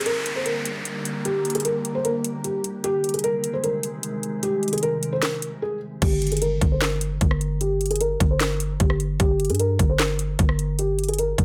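Set in a light digital ambience, this eerie, brooding hip hop and trap excerpt at 151 BPM moves in a half-time feel in G phrygian. A soft, thick-felt upright piano carries the melody up front, dark and intimate with audible action noise through a low-pass filter, over a glassy, ethereal FM pad with ensemble chorus and a brief electronic downlifter, as the chords move from Gm to Ab. Produced trap drums with a hard-clipped kick, sharp snare, metallic hats, handclaps, rim clicks and crash pause for a short break at 5.6 seconds; then the pad stops and a growling, buzzy 808-style bass enters at 6.0 seconds on Gm, while a filter sweep runs over the piano.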